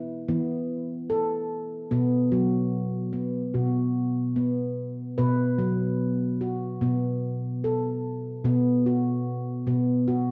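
A solo handpan played with the fingertips rings out up front in this hypnotic, meditative world piece at 73 BPM, its stainless-steel tone spanning B2 to B4 over an E5 chord that shifts to B5 at 1.9 s, bathed in a wet echo-chamber reverb and small-room ambience and colored by the worn, warbling pitch drift of old cassette tape, before a new section begins at 8.4 s in this short cut from a longer piece.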